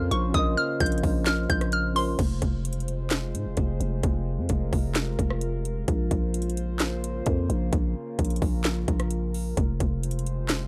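A half-time trap groove at 130 BPM in 4/4 drives this short, hard-hitting and melancholic cut in F minor, with an electronic kit of hard-clipped kick, sharp snare, metallic hi-hats, handclaps, rim clicks and a crash sitting up front. A growling, buzzy 808-style bass with a fast attack and decaying tail anchors the low end throughout, moving between F1 and Ab2. Beneath everything, a warbling, nostalgic tape-like pad with slow attack, long release, chorus, phaser and its own reverb holds sustained chords from start to finish. For the opening 2.2 seconds, a hollow, bouncy square-wave pluck with chorus carries a high melody over a mellow, clean tine electric piano, both over a Bbmadd9 chord. When those two parts stop, the harmony shifts to Fm, and the pad continues behind the beat and bass, cycling back through Bbmadd9 at 5.9 seconds. The recording is dry and gritty, with transformer saturation giving the sound a hardware edge.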